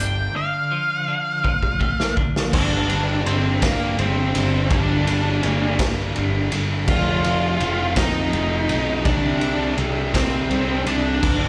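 At the opening, a dark, distorted octave-fuzz lead guitar carries the melody over a clean, compressed twelve-string electric guitar playing tremolo-touched arpeggios, while an overdriven, up-front fuzz bass and a raw garage drum kit set a slow 6/8 pulse in this cathartic, angsty quiet-loud alternative rock excerpt. The drums sound saturated and gritty, with dark cymbals, a punchy kick, a medium-tuned snare and a pumping small-room character, and a drum fill runs from 1.4 to 2.5 seconds. At 2.5 seconds the twelve-string drops out and two very quiet riffing guitars enter, one overdriven and the other a bright, thick fuzz. The lead keeps its slapback echo and digital delay as the chords move from G minor through F to C minor. The whole performance comes across as a live gig heard through the venue's PA, soaked in club reverb.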